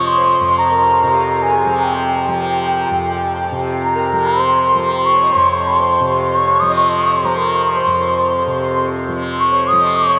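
Solemn and longing, this brief fragment of Hindustani classical music drifts in free time, cut from a longer piece. A mellow, airy bamboo bansuri carries the melody from G5 to Eb6 with tongued, expressive phrasing and vibrato, touched with delay, while a reedy, breathing pedal harmonium traces a quieter second line below, also with delay. A bright, softly plucked tanpura buzzes and shimmers as a drone from F2 to F3, all three playing throughout the 10.2 seconds and soaked in a huge, dreamy ambient reverb with an 8.9-second tail.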